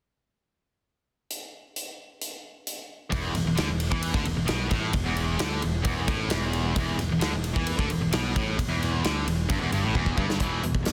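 A big, up-front rock drum kit opens this aggressive, heavy hard rock excerpt at 1.3 seconds, its punchy kick, medium-tuned snare, hi-hat, ride and bright cymbals ringing in a natural big-room sound. At 3.1 seconds two overdriven electric guitars and a picked electric bass join together, driving a low riff over E minor at 132 BPM in a straight 4/4. One guitar sits up front while the other stays in the background, both bright and picked. The bass adds a growly, punchy low end, direct and amped. A drum fill near the end of the passage leads to a closing E5 chord, all within a dense, heavily limited modern master with studio reverb, and the tuning sits slightly below standard pitch.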